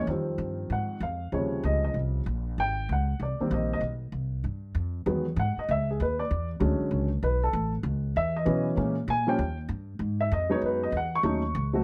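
A dark, mellow upright piano carries the melody up front, close and intimate, with its action noise audible beneath the notes, in this playful, warm swinging jazz piano trio cut from a longer piece. A pizzicato upright bass with steel strings sits just as close, giving a woody acoustic foundation. Both play throughout under light reverb, and the rich extended harmony settles into a new tonal centre at 5.1 seconds.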